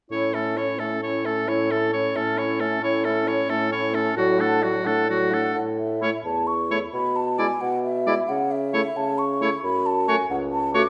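Lively and graceful, this quick classical-period wind quintet movement in 6/8 sets an airy, hollow flute melody with gentle vibrato over a bright, up-front oboe second line, with a soft-edged clarinet and a distant horn in the background as accompaniment and a mellow bassoon carrying the bass, all heard in a short excerpt within the roomy reverb of a recital hall.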